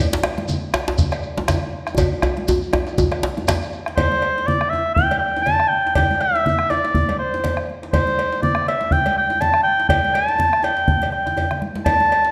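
This West African traditional drum ensemble piece, cut from a longer performance, has an earthy, festive mood at 121 BPM in 4/4 with a light swing on the sixteenths. The groove comes from a round, close and dry bombo, a metallic, compressed and saturated cowbell, softly played congas with a thick-skinned tone, and a medium-tuned djembe carrying metal rattles with a vintage, band-limited color. A second djembe sits dry and up front alongside a grainy, mellow shekere, and both fall away by 3.6 to 3.8 seconds during a drum fill. At 4.0 seconds a warm solo oboe takes the melody between C5 and A5, playing in a classical style with light vibrato, a punchy attack and a smooth top, standing out clearly at the front. Another brief drum fill arrives at 11.3 seconds, and the whole ensemble sits in a recital hall reverb with a 1.6-second decay.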